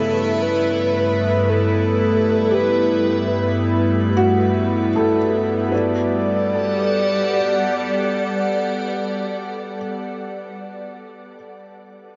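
Every part sounds together from the start of this slow ambient excerpt in G major at 57 BPM, with a warm, weightless mood. An evolving wavetable pad sits up front, holding bright, morphing chords through a phaser. A breathy, flute-like synth lead carries the melody with a warbling vintage tone, soft vibrato, chorus, shimmer reverb and tape echo. Behind them, a felt-muted upright piano plays mellow, intimate arpeggios with its own shimmer and echo, while a tense, string-like bowed drone and a glassy texture of drifting overtones sit low in the mix. The glass harmonics end at 5.8 seconds as the harmony moves from Asus2 over G to Gmaj9, and the piano is the last part heard, ending at 12.2 seconds. The whole recording is bathed in a huge, wet reverb, and its top end stays soft and rounded.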